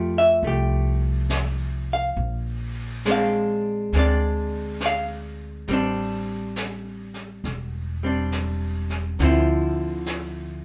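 Romantic and intimate, this short jazz ballad excerpt moves with a swung feel, featuring a clean, hollow-body electric jazz guitar in an accompanying role, picking chords such as Fadd9, Bb9, Am7 and Dm9. The guitar sits up front beside a woody, thumpy pizzicato upright bass. A brushed jazz kit with a high-tuned snare and hi-hat joins at 0.4 s, set lower in the mix, and the whole band plays together in one room, bathed in a wet studio reverb.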